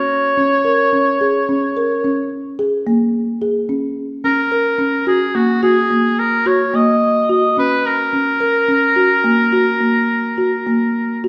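A reverberant recital-hall sound, as if caught in a church or concert hall, surrounds this short fragment of contemporary chamber music in an uneven 7/4. An oboe with light vibrato carries a pensive, classical-style melody from the start, sounding distant and roomy, while from 0.4 seconds a folk marimba played with soft mallets adds woody, round, rustic arpeggios on hardwood bars. The hypnotic harmony moves from Bbm7 to Gb at 4.0 seconds.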